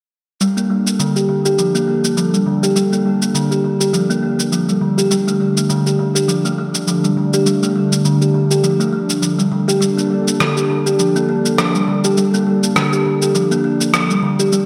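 From 0.4 seconds a woody, up-front kalimba plays dark arpeggios through low-pass filtering and digital delay over a detuned sawtooth pad with chorus and a filter sweep, while a gritty, overdriven shaker and rim click with gated reverb keep a hypnotic, meditative organic downtempo groove at 102 BPM, swung on the sixteenths in G minor through Gm7 and Dm chords, all set in a lush hall and a bright 1980s-style digital sound in this excerpt from a longer piece.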